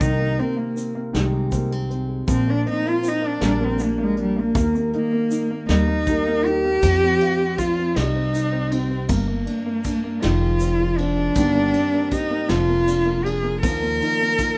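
A bowed cello with smooth vibrato carries the melody up front and takes a solo through the first 6.8 seconds of this intimate, wistful acoustic folk excerpt in F dorian, moving at a slow 53 BPM in a straight 6/8 and tuned to A4 = 435 Hz. Beneath it, a dark fingerpicked steel-string guitar with audible finger squeak and a woody pizzicato upright bass, which drops out at 14.0 seconds, provide the accompaniment, while a clear upright piano with short sustain and audible action noise plays arpeggios in the background. A soft brush drum kit with a punchy kick and rolled-off top and a grainy, bright tube shaker keep time under moderate studio reverb, as the chords shift from Cm7 through Abmaj7/C to a closing Ebsus2.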